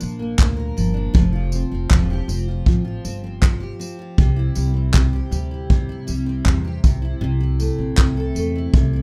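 An up-front vintage brush kit anchors this heartfelt, sunny acoustic pop excerpt in F major at 79 BPM, its punchy kick, handclaps and tambourine sitting under a rolled-off top. A woody, thumpy pizzicato upright bass on gut strings and a full-bodied, double-tracked picked steel-string dreadnought guitar carry a Bb, Fsus2, C and Am progression through the 9 seconds. Light reverb and a rough home-demo mix give it a warm, casual feel.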